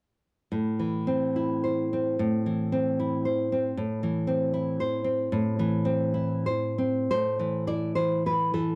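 A dry, close recording in a 1970s studio style, with light reverb, catches the nylon-string guitar up front, dark and full-bodied, with finger squeaks audible as it is fingerpicked from 0.5 to 8.8 seconds. This brief cut from a longer romantic piece for solo classical guitar sits in A minor and 3/4, moving with a rubato feel between 87 and 121 BPM. The mood is intimate and wistful, opening on an A minor chord and shifting into a new section at 7.1 seconds.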